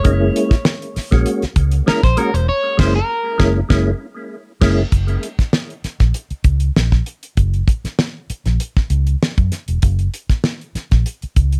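This funk excerpt opens with the whole band at once: a dry, fat-snared 70s drum kit and a dark, foam-muted fingered bass sit up front, while a clean electric guitar takes a short solo over an F#9 chord. The mood is energetic and strutting, moving at 98 BPM in a straight 4/4 in F# mixolydian. The guitar sits at the edge of break-up, picked and slightly gritty, coloured by phaser and plate reverb, and it drops out at 3.5 seconds. A mellow, percussive tonewheel organ adds stabs with key click, chorus vibrato, fast rotary speaker and analog delay until 4.8 seconds, and the band hits an accent from 2.5 seconds through 4.9 seconds. At 4.9 seconds the harmony settles onto a plain F# chord, leaving the tight kick, snare, hi-hat and crash with the round, amped bass to carry the groove under light reverb.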